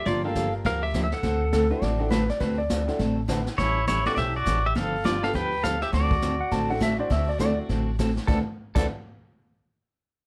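A moderately roomy studio sound frames this cheerful, playful western swing excerpt, with a warm, up-front pedal steel guitar carrying the swung melody through fingerpicked slides and volume swells. A full-bodied dreadnought acoustic guitar, woody pizzicato upright bass, a distant brushed drum kit with dark cymbals and a punchy kick, and a jangly, metallic tack piano fill out the accompaniment. A clean lap steel guitar adds a second slide line at 1.5 seconds and again from 6.4 seconds, over chords moving from Gm7 through ninth chords to a closing D13.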